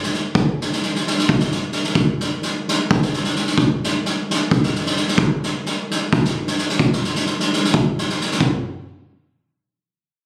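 Virtuosic and restless, this excerpt of Balkan folk moves in a straight 7/8 at 261 eighth-note beats per minute, carried by a soft-mallet drum kit whose punchy kick and medium-tuned snare sound roomy and compressed on a phone recording, with a new section arriving at 8.4 seconds just before the drums stop at 8.6 seconds.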